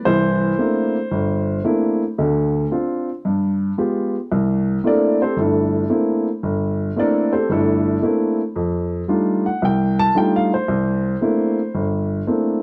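A relaxed swing at 113 BPM in 4/4 carries this short, sophisticated solo jazz cut in C mixolydian, played entirely on a woody upright piano with long sustain, sitting up front and reaching from G1 to A5. The harmony moves through rich chords like C13, Dm7 and G7b9 before the piano settles into a featured solo passage from 4.3 s, drifting to F13 and back to C13. A moderate studio reverb and a dark production give the sound a cozy, intimate glow.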